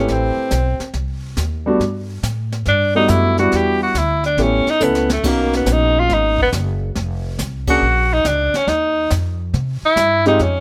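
Small-group swing and bop jazz at 140 BPM in 4/4, swinging and playful, with a strong lilt to the eighth notes, cut from a longer piece. A clear tenor saxophone carries the melody up front, its vintage jazz-style tone colored with vibrato and scooped notes as it moves between A3 and G4. A concert grand piano accompanies with a rounded, deep-bottomed sound, while an up-front upright bass plucks a woody, thumpy line beneath. The brush kit sits further back, pairing dark cymbals and a high-tuned snare with a boomy kick in a small-room sound, adding a fill from 4.8 to 5.2 seconds before the band hits an accent at 7.6 seconds. Light reverb surrounds the group as the harmony wanders from Am7 through Gmaj9, Bmaj9 and Fm before settling on C.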